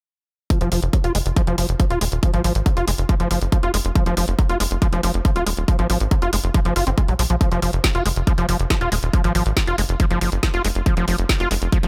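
Psychedelic trance at 139 BPM in F phrygian, driving and alien, this excerpt runs as a single section from 0.5 seconds, where an up-front electronic kick drum with a tight, layered punch anchors a drum kit of woody snare and bright hi-hats. Beneath it, a tight sequencer bass of sawtooth and square waves plucks low with a moving notch, while an overdriven acid bass carries the riff, squelchy and gritty with resonant saturation, sidechain pumping, digital delay and a filter sweep that runs its full length. The sound sits in a digital ambience, with the drums carrying the compact feel of a small room.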